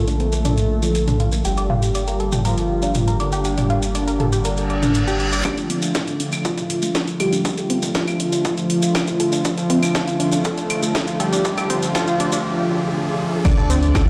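A fat, detuned analog lead carries the melody over a smooth analog pad, tight sequenced arpeggios and a round, deep bass in this dark, hypnotic melodic techno excerpt, with metallic hats, a cracking snare and grainy shekere, while a background reverse cymbal leads into the punchy kick at 5.4 s and a riser then builds until an impact lands at 13.4 s, all set in a huge ambient reverb.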